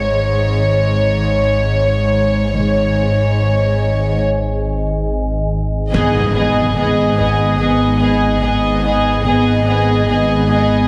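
Ominous and mysterious, this slow 72 BPM suspense film cue in G# minor opens with a sul tasto violin section playing a high melody over a dark cello section and a detuned, organ-like drone carrying ensemble chorus and its own reverb, adds double basses at 2.5 seconds, then at 5.9 seconds brings in a floating second violin line, a rich viola section, hard-stick taiko and a background electronic impact, all set in a wet concert hall with a heavily compressed, radio-like sound.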